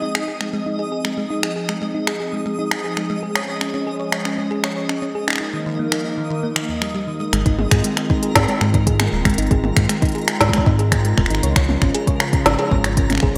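IDM at 117 BPM in Ab major, this wistful, glitchy fragment of a longer piece pairs a hollow, flute-like pad with a tine-like pluck that spins arpeggios through chorus and digital delay, while a twinkling granular layer adds an octave-up shimmer high above. In the first 7.3 seconds, filter sweeps move across both the pad and the arpeggio, and the pad carries a vintage 12-bit sampler grit. An organic electronic kit with a woody snare, smooth hats, finger snaps and toms sits up front, overdriven and dressed in gated reverb and delay. At 7.3 seconds a round, dark analog bass arrives, joined moments later by a deep, overdriven electronic kick. The chords cycle through Ab6, Db and Ebsus2 inside a lush hall reverb with a bright 1980s-style digital sheen.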